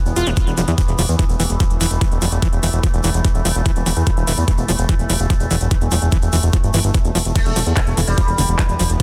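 An overtone-sweeping sawtooth drone opens this alien, intense psychedelic trance excerpt with sustained, chorused chords that pump against the beat. A fat, nasal analog bass sits up front with a knocking electronic kick, joined by a tape-toned drum kit of crash cymbal, handclaps and metallic hats, a grainy tube shaker and a squelchy, screaming distorted acid line with resonant filter sweeps and digital delay in the background. At 7.4 seconds a buzzing, shimmering sitar enters, plucked with a plectrum and colored by phaser and tape echo, all within a dense, heavily limited modern master.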